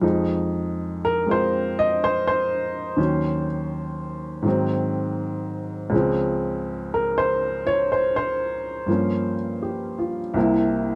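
Swinging and playful, this short solo jazz passage is cut from a longer piece and moves at an easy, relaxed pace with a firm triple-feel lilt on the eighth notes. A single upright piano carries everything from start to finish, spanning from a deep C2 in the bass up to Eb5. Its tone is woody and intimate, sitting up front in the mix, with the audible action noise of the instrument adding a natural, close-to-the-keys character. The harmony travels through minor seventh chords into a dominant and a major seventh, then turns toward a half-diminished chord and a closing C7 that leaves the phrase hanging. Close, detailed microphones and a light reverb give the recording a small, personal sense of space, and the tuning sits slightly below standard pitch at A4 = 438 Hz.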